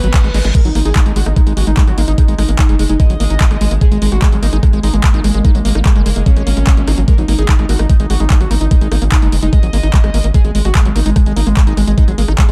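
A knocking, tape-warm electronic kick drives this dark, alien psychedelic trance excerpt at 147 BPM in G# minor, entering at 0.1 s just as a reverse cymbal sounds and the techno kit, with its overdriven punchy snare, claps, hi-hat, rim click and crash, plays a fill at 0.3 s. Above a round, deep analog bass, a gritty, guitar-like synth lead screams out the melody with vibrato, phaser, delay and sidechain pumping, while a squelchy, resonant acid riff with filter sweeps, chorus and a cassette-tape tint adds aggressive bite. A very quiet, pulsing gated texture holds sustained chords underneath, all in a dry production with little reverb.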